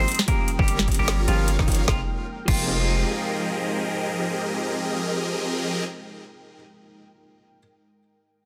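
A half-time feel at 150 BPM in 4/4, with a 56% swing on the sixteenths, drives this dreamy, bittersweet future bass excerpt in F minor, cut from a longer piece. The opening drop, running to 1.9 seconds, hits hard with a punchy, overdriven, layered electronic kick re-recorded in a large room, an up-front trap kit of woody snare, metallic hats, crash and ride, and a deep, sine-toned 808-style bass that decays after its fast attack. Huge, detuned supersaw chords carry the riff, bright and full-bodied with phaser and digital delay, while a clean, fingered semi-hollow electric guitar sings the melody through its own delay. Behind them sit a soft, thick-felted upright piano, mellow and intimate with short sustain and digital delay, and an ethereal, airy pad with slow attack, ensemble chorus and built-in reverb. Sidechain pumping breathes through the guitar, piano, pad, supersaws and bass, and the harmony moves from Gm7b5 to Fm11 at 1.9 seconds, with the drums dropping out at 2.6 seconds inside a dense, heavily limited modern master with light reverb.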